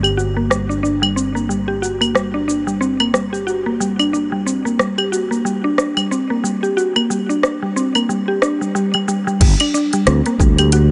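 Light reverb and a softened top end give this short excerpt of organic downtempo an intimate, rounded sound, its mood earthy and hypnotic. At 91 BPM in 4/4 with a swung sixteenth-note feel, it sits in G harmonic minor over a G minor chord. A woody, mellow FM pluck with a mallet-like fast attack and a decaying tone sits up front playing arpeggios, colored by chorus and tape echo. Beneath it, a growly, punchy fretless electric bass sustains low notes, pumping from sidechain compression. An overdriven electronic kit adds cabasa, claves, crash cymbal, smooth hi-hats and rim clicks. At 9.4 seconds the harmony shifts to a G power chord as a deep, layered electronic kick enters, playing until 10.6 seconds.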